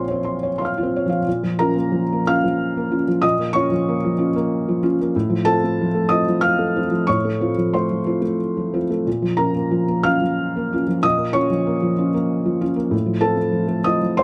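Neoclassical minimalist piano in Bb harmonic minor, this short excerpt carries a melancholic, wistful mood at 93 BPM in 3/4, its beats uneven and pulled by rubato. A felt-muted upright piano plays alone throughout, spanning from Bb1 up to F6 with a soft, mellow, intimate tone that has a vintage character. The action noise of the instrument is audible, adding a tactile presence to its smooth sound. The harmony opens on Bbmadd9 before settling into a Bbm chord at 1.3 seconds, then moves between Bbm and F/A, arriving on F/A at 12.9 seconds as the fragment breaks off. Recorded with close, detailed microphones and little reverb, the piano sits up front in a dry, near space.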